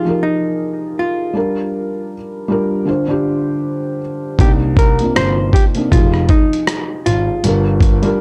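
A clean, dark hollow-body electric guitar picks a hazy, reflective lo-fi hip hop melody over a soft, intimate felt-muted upright piano with audible action noise, and at 4.4 seconds a deep, smooth vintage grand piano bass and a compressed, sampler-style drum kit with a thumpy kick, rim click and hi-hat carrying 12-bit grit join them in this short, dry and gritty swung excerpt.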